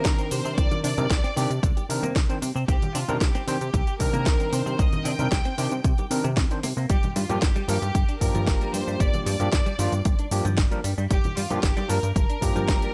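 Nu-disco at 114 BPM in C minor, this groovy, cosmic excerpt rides a punchy, up-front overdriven electronic kick and a layered house kit with cracking snare and bright hats, under a glossy chorused synth bass with pulse-width modulation and filter sweeps, while very quiet hand percussion of cabasa, bongos and congas adds soft acoustic detail. A barky, gritty tine electric piano with slapback echo carries the Cm9 to Gm7 harmony, and a clean, fingered electric guitar riff sits in the background under lush chorus. On top, a biting, intense violin section with light vibrato plays the melody, roughened by vintage 12-bit sampler grit and tape echo, in a fairly dry mix.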